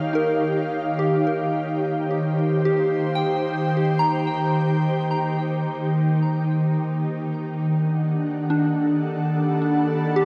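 An ethereal, airy pad and a gentle FM synth bell open this peaceful ambient fragment together, cut from a longer piece and moving in an unhurried triple metre. The ethereal pad sits up front, holding mellow sustained chords built from detuned sawtooth and triangle tones with a slow attack, long release, ensemble chorus and its own reverb, while a filter sweep runs across it for the whole passage. Alongside it, the bell traces pure, decaying arpeggios with a fast attack, coloured by chorus, phaser and delay. From 0.1 seconds a very quiet analog drone hums underneath, a vintage, warbling sawtooth and pulse-width-modulated tone that slowly evolves. The harmony rests on Eb7 before shifting to Gmaj7 over Eb at 6.7 seconds, and the whole mix is soaked in a lush hall reverb that gives it a dreamy glow.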